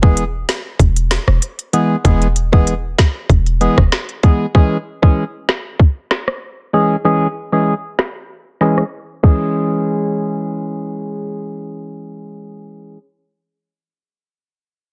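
A hollow, ring-modulated organ stab accompanies this tough, sultry dancehall piece, cut from a longer track, its chorused, pumping hits running through to 13.0 s over a move from E to C# minor. A punchy, sine-based 808-style bass sounds only for the opening 3.9 s, while an up-front electronic island pop kit with a tight kick, woody snare, smooth hats, rim clicks and crashes plays until 9.4 s, as a filter sweep runs into a brief silent gap. The dense, heavily limited master sits in a digital ambience, with a low-pass filter softening its top end.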